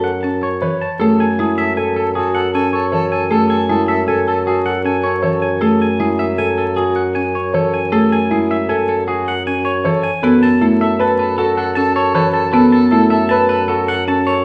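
A twangy, clean electric guitar opens this minimalist pattern piece up front with the melody, joined at once by grand piano arpeggios of long sustain and a mellow bassoon playing a low bass note with light vibrato. Almost immediately a buzzing marimba, played with medium hard mallets on woody hardwood bars, adds a dry accompaniment and stands as the loudest part. A soprano saxophone arrives at 1.0 seconds with a second line, its vibrato sounding distant and roomy, drops out, then returns at 10.2 seconds as the harmony comes back to its opening chord. The mood is bright and hypnotic, and the 6/4 metre moves with a straight feel. A moderate recital hall reverb and a dark, warm production with vinyl crackle frame this short cut from a longer piece.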